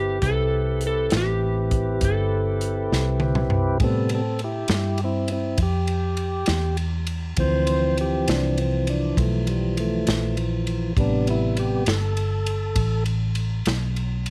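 A clear, clean tonewheel organ sits up front through a slow rotary speaker, holding sustained chords and then taking a solo from 3.8 seconds until it drops out at 13.0 seconds. This mournful, soulful slow blues in a 12/8 metre is cut from a longer piece. It opens with a dark, slightly broken-up electric slide guitar carrying the melody, played with the fingers, which falls silent at 3.2 seconds. Underneath, a vintage muted fingered electric bass gives a round, foam-muted, amped tone, also up front. An airy, polished acoustic drum kit with a medium-tuned snare and a punchy kick plays a fill just before the organ solo, then carries on with the bass to the close. The harmony moves from Am7 to Dm7 and back to Am7, all set in a light studio reverb.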